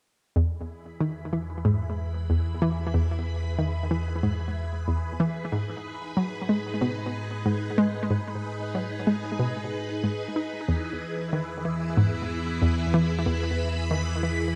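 A swirling, phased string machine fades in with sustained chords as a round, detuned analog pluck riff sits up front with chorus and delay, joined at 1.2 seconds by a mellow, warbling analog drone bass, forming an expansive, luminous fragment of ambient, sequencer-driven space music that moves from E to G#m and back under light reverb, digital ambience and a cassette-tape sheen.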